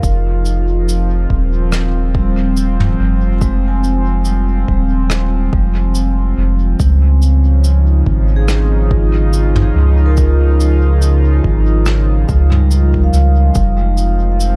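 A round, up-front dub sub bass anchors this meditative, deep ambient dub fragment in F minor, holding low sustained notes at 71 BPM with a gentle sixteenth-note swing. Above it, an airy, breathy pad with a chorus effect sustains soft, full-bodied chords, moving from Fm7 to Dbmaj9 at 6.8 seconds and back to Fm7 at 13.6 seconds. A close-miked vibraphone played with medium mallets and the motor off rings out metallic arpeggios, its dry tone carried into space by tape echo. A vintage brush kit with cabasa, rim clicks and toms adds a rolled-off acoustic texture treated with dub echo, while a layered electronic kick sits in the background until it drops away at 13.7 seconds. The dark, warm production wraps the whole piece, which is cut from a longer work, in a dim studio ambience.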